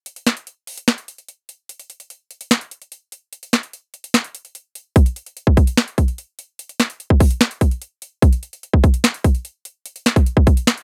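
The sound is dry, with little reverb, and the overdriven trap drum kit sits up front in this short cut from a longer hip hop track. The mood is hard-hitting and eerie, carried entirely by the electronic, produced drums in a half-time feel. The kit enters at 0.1 seconds and holds the whole passage: a hard-clipped kick, a sharp snare, metallic hi-hats and finger snaps. The opening stretch up to 5.0 seconds forms a break. The kit plays on to the close at 10.8 seconds, its overdrive giving the drums a gritty, aggressive edge.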